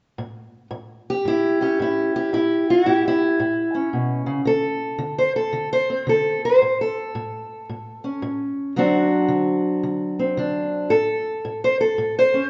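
A dark, boxy parlour tone rings through a moderate hall reverb, and the recording's highs are softened with nothing above 7.7 kHz. This is a swaggering, laid-back acoustic country blues excerpt at 112 BPM in a swung 4/4. A fingerpicked steel-string acoustic guitar plays alone and up front from 0.2 to 12.5 seconds, moving through A7, D5, A and D7 before the chords fall away at 10.9 seconds.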